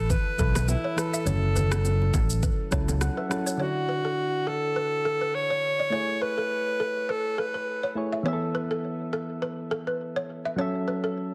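A breathy alto saxophone carries the melody up front with a soft, whispered attack and a touch of tape echo, giving this sunny, joyful afrobeats fragment an intimate pop feel at 103 BPM with a light sixteenth-note swing. Beneath it, soft electric-piano-like synth keys shimmer with a mellow, warbling chorus tone, while a woody balafon riff played with soft rubber mallets sits in the middle of the mix, also touched by tape echo. At the start, a dark, round fingered electric bass and a produced afro-pop kit with a deep kick, rim click, shaker and a gently clipped snare drive the groove, with congas and bongos played by soft hands in the background. The synth keys add a fill from 2.7 seconds, and the drums, bass and hand percussion are gone by 3.6 seconds, opening into a lighter second section where the saxophone floats over keys and balafon until it stops at 8.0 seconds. The harmony moves through Esus4, F#m7, Dadd9 and Amaj7 in a dense, heavily limited modern master with light reverb and studio ambience.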